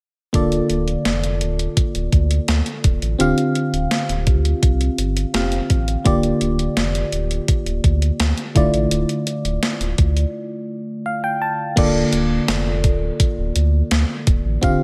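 At 0.3 seconds, a mellow FM electric piano, a deep sub bass and a clean 12-bit drum machine begin together in this moody, nostalgic piece of 1980s-style pop, heard as a cut from a longer track. The up-front electric piano has a fast, decaying attack with a noise layer, and a phaser colours its chords as they drift from Bbmaj7/D through Csus4/D and Gm7/D to Dmadd9, all held over a low D. Beneath it, the sub bass with octave blends sine and triangle tones into a full, sustained foundation. The sampler-style drum machine sits up front with a thumpy kick, a medium-tuned snare, hi-hat and crash, its tape-warm sound re-recorded in a small room and bathed in gated reverb. A break arrives at 10.3 seconds, and the electric piano plays a short fill from 10.7 seconds before the next section returns to Bbmaj7/D at 11.8 seconds. Light digital ambience wraps the mix in a faint sheen.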